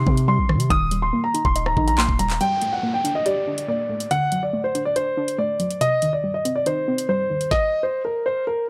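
An intimate, up-front upright piano melody with audible action noise opens this cold, dark drill hip hop excerpt in G harmonic minor at 141 BPM in half-time, together with a detuned, warbling lo-fi pluck with chorus, a deep, mellow sine 808-style bass that holds only until 2.4 s, and an electronic drill kit of knocking kick, woody snare, rim click, handclaps and metallic hats, while a faint electronic downlifter passes through the middle as the chords move from Cm and Eb through Gmadd9 and D back to Cm, all in a dry, gritty hardware sound.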